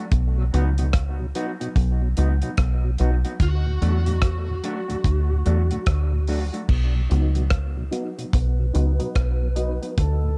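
Dub reggae at a laid-back 73 BPM in B major, this spacious snippet opens on a break, with a round, foam-muted fingered bass and a dry, tight-kicked 70s drum kit up front, while a clean, fingered electric guitar plays alongside a mellow, lightly overdriven tonewheel organ with slow rotary and chorus vibrato sitting in the background, both soaked in dub echo. At 3.4 seconds an overdriven, picked lead guitar from a small cranked amp enters with its own echo, and a filter sweep begins at 6.7 seconds, with muted sawtooth chord stabs plucking in the background from 7.1 seconds. A small room reverb gives the whole production a dark, warm character.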